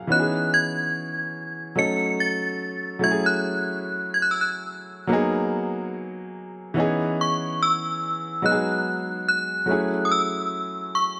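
R&B in C# minor at a relaxed 72 BPM with a light sixteenth-note swing, this sensual, moody excerpt moves through a C#m7, D#m7b5, F#m7 and G#m7 progression, tuned slightly flat at A4 = 437 Hz. A warm baby grand piano with a natural tone and short sustain carries the accompaniment up front, while a vintage FM synth chime sings the melody high above it, its inharmonic, warbling ring thickened by ensemble chorus and tape echo. A light reverb wraps the pair.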